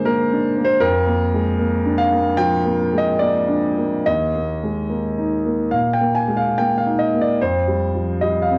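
A concert grand piano, up front with a deep bass and a natural, cassette-tinged tone, plays alone through this hopeful, peaceful 8.6-second fragment of neoclassical minimalist music, moving in a rubato 4/4 from a rootless Gm through Bb/F and Eb5 to Fsus2, tuned to A4 = 444 Hz and set in a moderate studio reverb on a home cassette recording.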